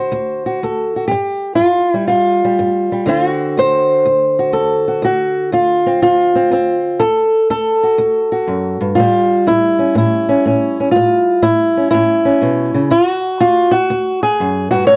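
A fingerpicked old ladder-braced acoustic guitar carries this swaggering, gritty acoustic country blues alone, its dark, boxy, woody tone and old strings sitting up front under close, detailed microphones with little reverb. The short excerpt moves at 122 BPM in 4/4 with a swung eighth-note feel in D mixolydian, tuned slightly sharp to A4 = 443 Hz, spanning D2 to C#5. After an opening D7 and a brief chordless break, it settles back on D7, shifts to A7 at 9.0 seconds and resolves to D at 12.9 seconds.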